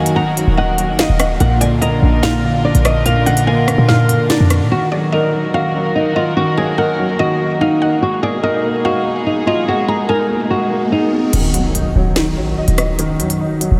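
Soaked in a huge, dreamy reverb, this tense, dark half-time drill excerpt sets a woody, fingerpicked flamenco guitar melody up front over a mellow, deep-voiced grand piano, a soft bowed string section floating in the distance and a round FM mallet-like pluck tucked in the background, while a punchy, tight 808-style bass and a crisp drill kit with a sharp snare drop away through the middle and return at 11.3 seconds, when a background riser breaks into an electronic impact.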